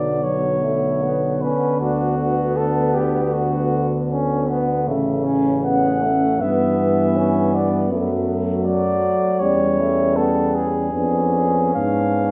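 Heard in the wet reverb of a recital hall, this solemn, melancholic hymn-like passage for brass band unfolds with a rubato feel in 4/4, cut from a longer piece. A mellow flugelhorn carries the melody up front, while a tight French horn section with light vibrato holds a second line in the background. Beneath them, a warm euphonium and a clear, distant trombone provide the accompaniment, and a roomy tuba with light vibrato anchors the bass as the harmony moves through a C#dim/E chord at 9.4 seconds to an Fdim7 chord at 10.9 seconds.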